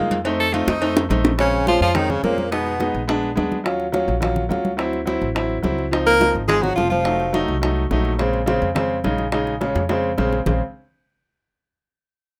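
Fiery and sophisticated, this short cut from a longer Afro-Cuban jazz piece moves in a straight 4/4 at a brisk clip over a rough home demo mix with light reverb. A warm, natural baby grand piano sits up front with the accompaniment while a woody, dark pizzicato upright bass anchors the low end, both playing throughout. Congas with a thick, damped skin sit close and dry in the background, joined by round, low-tuned cowbell and bongos heard in a small room, and drum fills arrive near 0.7 and 9.8 seconds. A bright, close-miked tenor saxophone leads with light vibrato and a subtone edge, taking a solo over the band at the start before the baritone saxophone enters at 1.4 seconds with a smooth-topped second line. The two horns then return together briefly around 6.1 seconds over a harmonic path that passes through Bbm7, Fm7b5, Bb7b9, Ebm9, D9 and Dbmaj7 before settling back on Bbm7.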